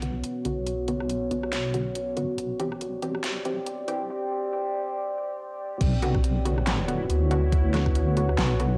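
A moody pad opens this brooding, cavernous deep dubstep excerpt, its slow-attack sawtooth chords carrying a sub octave and built-in reverb. Alongside it come a muted dub chord stab, a filter pluck with dub echo whose filter sweeps through the build-up, and an up-front wobble bass that is saturated, detuned and dark. A layered dubstep kit with a huge, overdriven snare, handclaps, rim clicks, hi-hats and crash sets a half-time swing, and the harmony shifts at 2.4 seconds. At the drop at 5.8 seconds a knocking electronic kick enters. From 7.0 seconds a reversed, granular, dreamy texture swells in the background. The excerpt has the hazy feel of a home recording on cassette, with light reverb and digital ambience.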